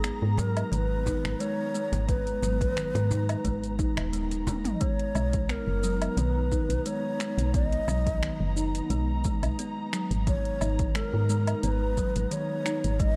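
A dark, intimate small-room sound frames this mystical, hypnotic organic downtempo excerpt at 88 BPM, where a breathy, close-miked low ney with expressive vibrato carries the melody with delay over a lush bowed string section and a round, woody FM bass that both pump with sidechain, a hollow-toned kalimba rings out delayed arpeggios, and an overdriven deep house kit of metallic hats, snaps, shaker, toms and woodblock plays beside a faint background cajon and a sparkling granular shimmer until 4.8 seconds, while a punchy electronic kick that enters at 1.1 seconds drops out briefly for a drum fill before the harmony moves from G#m to Bmaj9.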